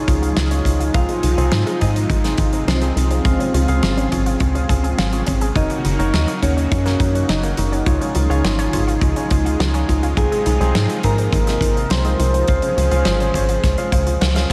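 A moody, cinematic synthwave excerpt at 104 BPM opens on a round, dark octave-layered synth lead carrying the melody with chorus, delay and vibrato, over a very quiet, pure FM bell line, a detuned analog pad pumping in the background, very quiet nasal, wave-folded analog pluck arpeggios and barky tine electric piano stabs, before a dark, driving, tube-saturated sequencer bass up front, a big-room rock kit with a fat snare and a punchy kick drum enter at 0.1 s, moving through Db, Fm7/C and Gb6 in a dreamy cathedral-reverb mix that ends with a band accent at 14.2 s and a drum fill at 14.4 s.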